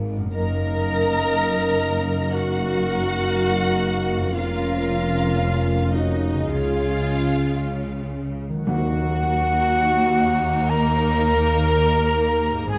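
Cinematic orchestral film score in Eb dorian, bittersweet and moving, drifting rubato at about 54-61 BPM, where a warm, expressive violin section sings the melody over lush viola accompaniment, rich bowed cellos and double basses, an airy flute, a close clarinet and a smooth background violin line, while a bright ringing harp arpeggiates, a dark, distant horn section holds soft-attack chords until 8.3 seconds, and crisp timpani strike in at 8.7 seconds as the harmony settles on Ebm, all in a recital-hall reverb.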